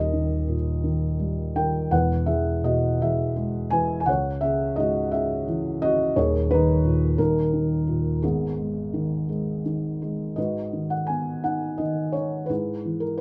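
A felt-muted upright piano plays alone and up front, its soft, dark tone thickened by heavy felt, in this wistful, melancholic classical excerpt from a longer piece, drifting in a rubato 6/8 through a small room's moderate reverb before turning to a new section at 10.4 seconds.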